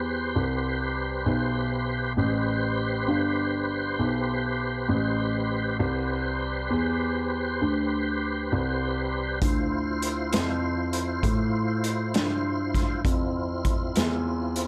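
Mournful and smoky, this slow blues in a straight 12/8 opens on a full, clean tonewheel organ holding sustained chords through a slow rotary speaker and chorus vibrato, while a dark, boxy baby grand piano carries the low bass line with short sustain. At 9.4 seconds, as the harmony moves from Am9 to Dm9, a vintage acoustic drum kit joins with a punchy kick, medium-tuned snare and hi-hat, its rolled-off top and pumping small-room sound sitting up front. Light reverb surrounds this brief cut from a longer piece.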